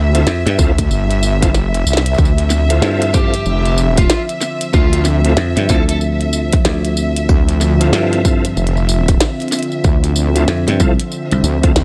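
A dry, close-sounding mix with little reverb puts a punchy, overdriven electronic kick and a heavy, saturated wobble bass up front in this gritty, swaggering glitch hop excerpt at 94 BPM in D minor, swung on the 16ths and resting on a Dm7 chord. Beneath the kick, a glitchy kit of tiny snare, clicky hi-hats and tambourine adds a tape-warm texture, with a drum fill at 1.5 seconds. A bright, growly thumbed slap bass, foam-muted and direct, sits alongside the detuned sawtooth-and-sine wobble, while a smooth tonewheel organ plays stabs through chorus vibrato, a fast rotary speaker and tape echo. A rich, bowed string section holds a single high note, and a soft, detuned analog pad enters at 2.2 seconds with sustained chords in the background, both pumping against the kick along with the organ. From 3.1 to 6.0 seconds a dark, fuzz-distorted lead guitar picks a short, compressed melody that trails off in tape echo.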